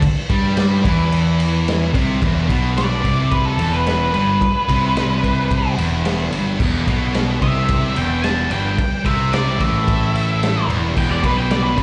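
A straight 4/4 garage rock groove at 110 BPM in E minor drives this gritty, swaggering excerpt from a longer piece, with a raw, saturated drum kit of punchy kick, medium-tuned snare, ride and crash cymbals up front, joined at 0.3 seconds by a thick, double-tracked fuzz guitar riff and an overdriven picked electric bass. The harmony moves from a C5 power chord to Em at 2.2 seconds, and at 2.8 seconds a dark octave-fuzz lead guitar enters with a distorted solo ringing through slapback echo. It sounds like a live club gig heard through the venue's PA, with a small room's light reverb and a rolled-off top end.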